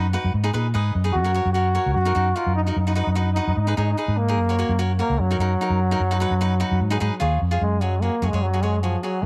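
Bouncy and sunny, this short calypso excerpt in F# major moves at 148 BPM with a bright, crisp picked cavaquinho comping and adding a fill at 0.3 seconds, a dark, round, foam-muted vintage fingered electric bass sitting punchy and up front, and a clear trombone entering at 1.1 seconds with light vibrato and a smooth top before taking a pop-style solo from 7.6 seconds, all in a small room with light reverb.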